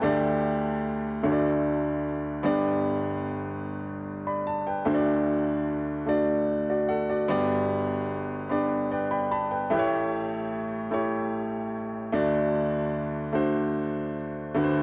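A solo baby grand piano opens on a suspended D chord that settles onto D, setting a hopeful, soulful gospel mood in G major. The pace is slow and unhurried at 50 BPM in a straight-feeling 6/8, and the piano ranges from deep bass notes at G1 up to B5. Its tone is clear, intimate and natural, sitting up front with long sustain and audible action noise that brings the instrument close. The harmony moves through G and D before an A7 turns back toward D, with a short piano fill from 8.5 to 9.7 seconds leading into that turn. A moderate large-studio reverb adds space, and the instrument is tuned slightly high at A4 = 444 Hz in this brief passage cut from a longer piece.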